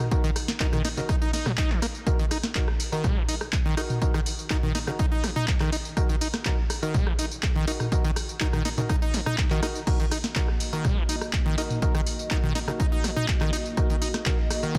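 Trippy and gritty, this acid house excerpt rides a punchy, up-front electronic kick and a booming analog drum machine with tonal snare, metallic hats, handclaps, rim clicks, tambourine, toms and crash under a light reverb. A squelchy, resonant acid bass riff with a bright filter sweep threads through hollow, organ-like stabs, both colored by chorus and tape echo. At 10.3 seconds a moody, detuned analog pad arrives with sustained chords that pump with sidechain compression, all pressed into a dense, heavily limited master.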